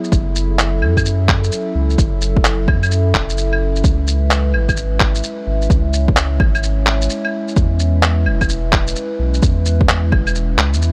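Future garage at 129 BPM in C# minor, swung on the sixteenths, with a ghostly, nocturnal mood, cut from a longer piece and moving through F#m7, C#m7 and E6. A warbling, nostalgic lo-fi pad of square and triangle tones holds dark sustained chords with slow attack, chorus and its own reverb, pumping against the sidechain beneath muffled, pitched-down, up-front shaker, handclaps and claves. A round sine sub bass, also pumping, enters at 0.1 seconds alongside a deep, overdriven, layered kick re-recorded in a large room, which drops out at 10.2 seconds, all within a light reverb.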